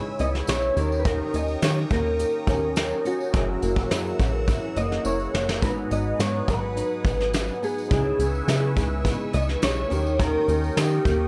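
A straight 4/4 groove at 105 BPM drives this mellow, wistful piece of indie and bedroom pop, tuned to A4 = 436 Hz and cut from a longer piece. A soft brush kit with a punchy kick and medium-tuned snare sits up front yet sounds distant and roomy, joined by a jingly tambourine tucked in the background, with a short drum fill at 5.1 seconds. A plucky, dark analog bass with a funky sawtooth and pulse-wave bite anchors the low end, while a bright, fingerpicked flamenco guitar with fresh strings, treated with ensemble chorus and vibrato, weaves accompaniment beneath. Round, detuned analog keys with chorus and phaser sit further back, and a swirling, evolving sawtooth pad holds sustained chords through phaser and chorus. On top, the melody comes from a slightly broken-up, compressed electric guitar through a small old amp, colored by analog chorus and tape echo. The harmony moves from C#m7 through D#7, F#7 and G#m7 before circling back, all under light reverb.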